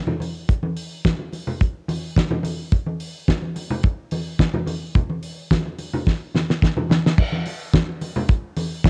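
This short cut from a longer disco piece has the intimate feel of a home cassette recording, with light reverb and a small room ambience around the players. At 108 BPM in a straight 4/4, the groove is danceable and driving, built entirely from percussion. A damped 70s acoustic drum kit sits up front, its dry sound pairing a fat snare and a tight kick with hi-hat and crash cymbal. Low-tuned acoustic congas, also forward but lower in the mix than the kit, ring out under soft hands with a compressed, saturated character. A drum fill runs from 6.1 to 7.2 seconds and leads into a new section that carries the groove to the end.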